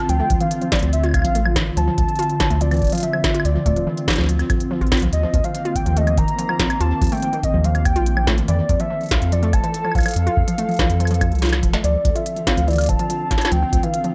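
IDM at 143 BPM in a straight 4/4, this intricate, playful passage is cut from a longer piece and moves through Dm7, Cm7 and Fmaj7 before returning to Dm7 at 11.8 seconds. A warbling, nostalgic lead carries the melody high above, its detuned tone coloured by chorus, vibrato and tape echo. Beneath it, a glassy, ethereal FM pad holds slow-attack chords with ensemble chorus, reverb and a touch of 12-bit sampler grit, while a lo-fi, detuned pluck spins arpeggios through chorus and tape echo. A round, deep analog bass sits most prominently in the mix, dark and slightly nasal. The drums pair a deep, tape-warm electronic kick with an industrial kit of claves, smooth hi-hats and a clanging snare in a small room, and a brief drum fill arrives at 11.4 seconds.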